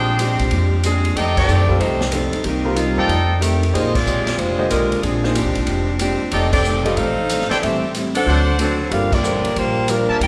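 Big band swing at a brisk 186 BPM in F mixolydian, this joyful snippet puts a vibrato-rich, close-miked saxophone section up front on the melody while a brilliant, tight trumpet section punches in stabs that drop out at 3.4 seconds and return at 6.3 seconds, all over a woody, thumpy pizzicato upright bass, a dark, clean hollow-body electric guitar and a worn baby grand piano entering at 1.7 seconds in the background, with a polished drum kit of dark cymbals and punchy kick, the band accenting together throughout in a wet recital hall reverb.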